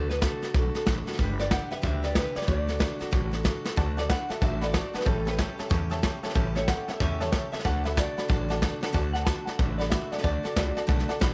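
A twangy, slightly broken-up electric guitar with tape echo carries the melody in this upbeat, retro rockabilly excerpt in D major at 186 BPM with a swung feel, over picked steel-string acoustic guitar with finger squeak, a woody, thumpy pizzicato upright bass and an up-front vintage brush kit with a punchy kick, while a jangly, metallic tack piano enters at 3.8 s, adds a honky-tonk fill just before a clean electric guitar solo takes over at 8.9 s, all in light reverb.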